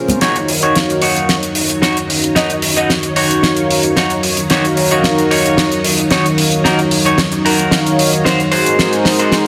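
A smooth, sawtooth-edged analog pad with slapback echo and a lush, vintage string machine open this groovy, cosmic nu-disco excerpt together, soon joined by a dry, up-front 70s drum kit of hi-hat and fat snare and a clean, picked electric guitar riff, as the passage builds through a drum fill and a filter sweep on the pad, moving from Ebm7 to Ab7 at 8.5 seconds under a dense, heavily limited master with plate reverb.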